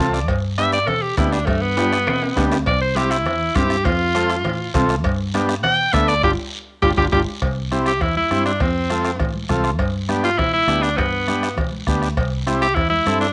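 A joyful, danceable cumbia rolls along at 202 BPM in straight 4/4 and C major, carried by a soft-beatered bombo, a raspy guiro, bright congas set back in the mix, ringing metal-shell cowbell and timbales, and a dark, round fingered electric bass. A buzzy vintage combo organ with light vibrato and a cassette-tape tint opens with a fill and then comps up front, while a forceful, edgy alto saxophone enters at 0.6 seconds to solo through the first section. A drum fill arrives at 1.8 seconds, and another fill plus a band accent lead into the second section at 7.4 seconds. The home cassette recording carries light reverb, and this passage is cut from a longer piece.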